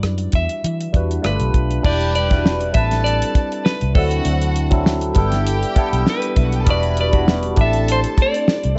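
Up front sits a damped 1970s drum kit, dry and acoustic, with a fat snare, tight kick, rim clicks, hi-hat and crash cymbal driving this lush, smooth and cinematic soul excerpt at 100 BPM in E minor with a light 16th-note swing. Beneath it, a foam-muted fingered electric bass gives a round, punchy, amped low end, while a barky tine electric piano, bright and lightly overdriven through a combo amp with a phaser, fills in the harmony. A clean, dark picked electric guitar carries the melody, coloured by spring reverb and slapback echo. At 1.9 seconds a studio violin section enters with a bowed, even ensemble tone and vibrato, adding a second line with its own slapback echo until 8.5 seconds. The chords move through Em9, G7, Am11, D9 and G6 in a dry, close mix with a rolled-off top end.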